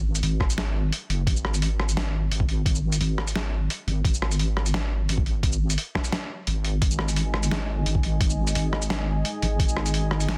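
A half-time drum and bass groove in 4/4 sets a dark, spacious mood. A gritty, pitched-down boom bap drum kit of hi-hat, rim click, shaker and medium-tuned snare sits up front alongside a thumpy, tape-toned electronic kick, both sounding re-recorded in a small room, under a deep, saturated wobble bass with chorus. The kick drops out briefly at 6.5 seconds, and at 6.8 seconds a moody, detuned analog pad enters with slow-attack sustained chords, 12-bit sampler grit and sidechain pumping, all in a dry, dense, heavily limited mix.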